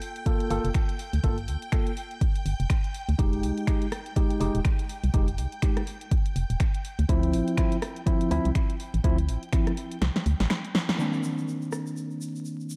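Deep and late-night, this deep house excerpt at 123 BPM in C minor swings gently as a punchy, tape-warm kick and analog drum machine snaps, hats and rim clicks drive under a hollow, organ-like FM bass, worn and lightly overdriven electric piano stabs with delay, and shimmering string-machine violins pumping through Gm9, Fm9 and Dm9, before the kick drops out for a drum fill at 10.0 seconds and a grainy tube shaker joins on Cm9 at 11.0 seconds amid dark vinyl crackle.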